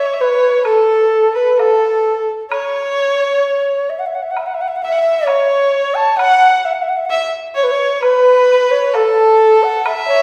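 Graceful and pastoral, this short passage cut from a longer Chinese chamber ensemble piece moves in a free, rubato 4/4 around 65 BPM in the A gong mode. A bright, reedy low xiao carries the melody up front with a soft attack and vibrato, while a single bowed erhu adds a clear, biting second line with earthy portamento. A dry woodblock sits in the background from 0.7 seconds, all heard from further back in a recital hall with a 1.5-second reverb.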